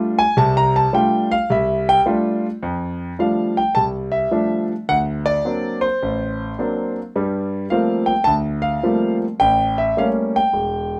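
A solo concert grand piano sits up front with an intimate, natural tone, deep bass reaching down to E1 and audible action noise, playing sophisticated, warm jazz in F major at a swung 106 BPM in 4/4. Cut from a longer piece, the passage moves from an F69 opening into a second section at 2.6 seconds that passes through D7b13, Gm11 and A7b9. A moderate club reverb gives the instrument the feel of a jazz club.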